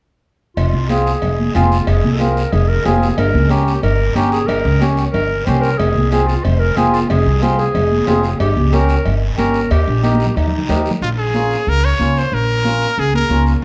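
A bright, up-front trumpet takes the melody at 11.0 seconds, its smooth-topped, pop-style tone carrying vibrato over a Bb minor chord in this passionate, driving cumbia, cut from a longer piece in F minor. Earlier, from 0.6 seconds, a clear clarinet plays a jazz-style second line with light vibrato and scooped notes, while a reedy, mellow vintage accordion supplies full, band-limited accompaniment through F minor, G diminished and Eb. The woody pizzicato upright bass sits up front, holding the low end of the straight 4/4 groove at 184 BPM, with high-tuned, thick-skinned congas played by soft hands in the background alongside a raspy guiro. Distant, ringing cowbell and timbales add metal-shell color, and a drum fill arrives at 10.0 seconds just before the trumpet's entry. The dark production is bathed in a large studio reverb.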